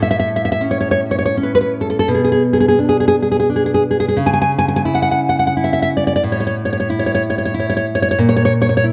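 Moving in a rubato 3/4 at 88 BPM with uneven beats, this short, sunny and warm romantic piece for solo classical guitar in A major is cut from a longer work. The nylon-string guitar sits up front, fingerpicked on fresh strings with a deep, acoustic tone and audible finger squeak, ranging from A2 to G#5. Close, detailed microphones and light reverb frame a chord path that drifts from A through Bm6 and C#madd11 to A5, closing on A#m at 8.2 seconds.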